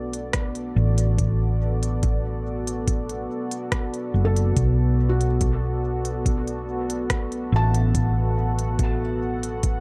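Hazy and spacious, this short ambient dub cut sits at 71 BPM in B minor, resting on a single Bm7 chord under a dark, warm production with little reverb overall. A deep, detuned sawtooth pad holds moody sustained chords through chorus and its own reverb, while a felt-muted upright piano plays soft, intimate arpeggios with audible action noise and dub echo. Up front, a round, hollow-body electric bass anchors the low end, joined by crisp hi-hat and rim click from an electronic kit heard in a large room, and a muffled, thumpy, pitched-down kick entering at 0.3 seconds.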